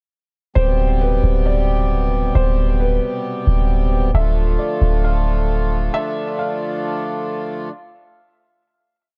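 From 0.6 seconds, a felt-muted upright piano plays a soft, sparse looping melody through a low-pass filter and tape echo over reedy, breathing harmonium chords and a deep, boomy 808-style bass holding long sub-bass notes until 5.9 seconds, in a hazy, melancholic half-time hip hop piece at 134 BPM in D dorian, moving from C5/D to Dmadd9 in an echo-heavy mix with light small-room reverb.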